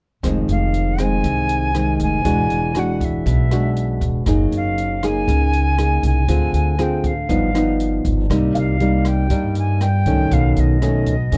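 An airy jazz flute carries the melody from 0.5 seconds, its metal tone showing a crisp, chiffy attack and expressive vibrato, set at a distance in plate reverb. This is a melancholic, intimate bossa nova at 119 BPM in a straight 4/4, cut from a longer piece. Up front, a thumb-plucked classical nylon-string guitar supplies the harmony, with audible finger squeak, over a woody pizzicato upright bass strung with steel. An acoustic jazz kit in a small, natural-sounding room keeps time quietly on hi-hat, rim click and a boomy kick. From 8.5 to 10.5 seconds a very quiet baby grand piano adds a few high notes with short sustain and audible action noise. The harmony moves through rich chords such as Fm7, Gb69 and G7b13 under a dark, warm production with light reverb.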